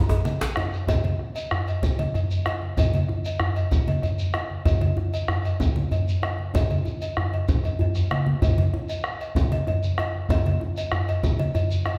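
Heard from further back in a wet recital hall, this earthy, driving West African drum ensemble excerpt rolls along in a straight 12/8 feel, opening with a drum fill in which a medium-tuned djembe sounds briefly before a tight, cracking djembe with metal rattles takes over up front at 0.6 seconds under hard hands. A round, up-front bombo anchors the low end beside low-tuned congas with a thick skin and soft hands, while a metallic cowbell rings out and a grainy, mellow shekere sits distant in a large room. A second drum fill arrives at 7.6 seconds before the ensemble drives on to the cut.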